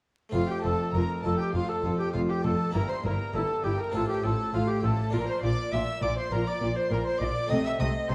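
Brilliant and festive, this short excerpt from a baroque-style concerto movement in F major moves at 100 BPM in a straight 4/4, with every part playing together from 0.3 to 8.1 seconds. A distant, woody alto recorder with a crisp chiff and vibrato carries the melody alongside a close violin section with light vibrato and gut-string tone, while a second violin line, a dark, smooth-topped viola section and a distant cello section sit in the background, an airy, bright harpsichord on a single set of strings fills in the accompaniment, and a bowed double bass section anchors the low end. The dark production places the ensemble in a moderate recital-hall reverb with a layer of vinyl crackle.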